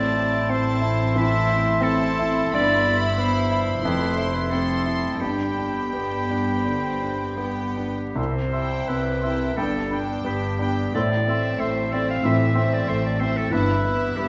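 A clear grand piano, with audible action noise and long sustain, leads this lush, passionate romantic excerpt for piano and orchestra, moving in flexible rubato as an intimate violin section shares the melody, bowed sul tasto with light vibrato. An up-front clarinet with a vintage tinge carries a second line alongside a pure, floating background violin section, an airy, hollow silver flute and a solo oboe with vibrato, while a dark viola section supplies soft-attack accompaniment and a very quiet, mellow French horn section holds chords until 13.7 s. Cello and double bass sections ground the harmony with a soft-attack, warm bass, the orchestra set in a moderate scoring-stage reverb.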